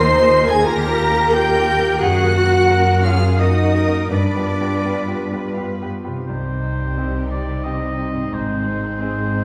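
A clear, intense violin section carries the melody of this moving, longing cinematic excerpt, its distant, lush vibrato reaching as high as C7 at a rubato 86 BPM in 3/4 with uneven beats. Beneath it, a rich, expressive double bass section sits up front alongside a clear cello section, while a soft-attack French horn section holds sustained chords in the background. A second violin section plays very quietly with a smooth top, joined by a roomy solo oboe and an airy, tongued flute that drops out at 5.6 s. A brilliant grand piano with deep bass, a smooth, even viola section and a ringing, fingerpicked harp playing arpeggios fill out the accompaniment. The harmony moves from Ebadd9 through Gb and G7 before settling into C minor at 6.3 s, and the whole ensemble is heard from further back in a recital hall with a 1.4 s reverb.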